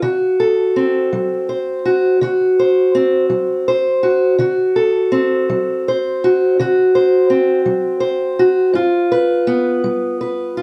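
A fingerpicked steel-string acoustic guitar plays alone from the first moment, its dark, boxy parlour tone sitting up front in a moderate studio reverb. This rollicking, gritty blues fragment rolls along in a slow 12/8, resting on a D7 chord before moving to G7 at 8.8 seconds. It is cut from a longer piece and ends at 10.6 seconds.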